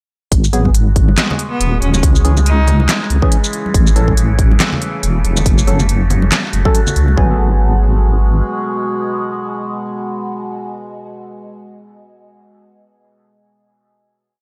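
Meditative and heavy, this deep dubstep piece opens straight into a half-time drop with a swung sixteenth-note feel. A punchy, tape-touched electronic kick and an up-front kit of deep snare, crisp closed hats, shaker and clap drive the groove. Ringing, medium-tuned congas echo close and dry in the background. Underneath, a dark, detuned wobble bass carries a compressed dub-style line through chorus, while a resonant sawtooth-and-sine drone with moving overtones sustains the chords beneath sparse, hollow organ stabs that decay through tape saturation and dub echo. Between 1.2 and 2.9 seconds, a single bowed cello offers short, smooth answering phrases with light vibrato and echo. After the beat falls away at 7.2 seconds, the pad and stabs hold a final G#m7 in a dry, gritty digital ambience, with the wobble bass lingering briefly beneath them.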